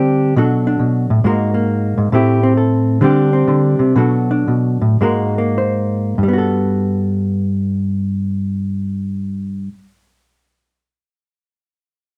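A relaxed swing in 4/4 carries this solo jazz fragment, taken from a longer piece, with a single clean, fingered electric hollow-body guitar up front, its dark, compressed tone set in light reverb. The guitar moves through chords like Bm7, Am7 and D7sus4, easing the pace between 2.1 and 6.2 seconds before landing on a Gmaj9 as the second section begins. It plays on until 9.9 seconds.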